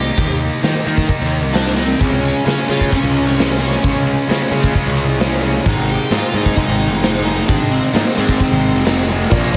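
A big arena sound with moderate concert hall reverb frames this confident, sunny classic rock excerpt at 131 BPM in straight 4/4, cut from a longer piece. A dark, smooth overdriven lead guitar with slapback echo carries the melody over a picked, overdriven rhythm guitar riff and a growly fuzz bass, while a punchy acoustic drum kit with bright cymbals sits up front and a jingly tambourine stays in the background. A compressed, distorted guitar joins the riff at 2.0 s as the chords move from Eb5 to Db and then Ab, and a woody upright piano appears only at 9.3 s.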